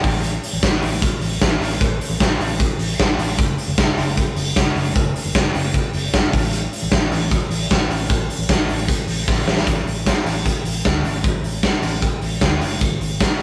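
A rough rehearsal-room recording with warm saturation and light reverb gives this short excerpt of jangly indie pop a lived-in, unpolished feel. At a brisk 153 BPM in a straight 4/4, the mood is youthful and breezy. A big acoustic rock drum kit sits up front, its punchy kick, medium-tuned snare and hi-hat ringing in a bright stone room. Beneath it, a vintage muted fingered electric bass offers a dark, round, foam-muted tone through an amp, moving between F#1 and D2. A drum fill at 9.3 seconds leads into a new section at 9.7 seconds, which runs until the cut at 13.4 seconds.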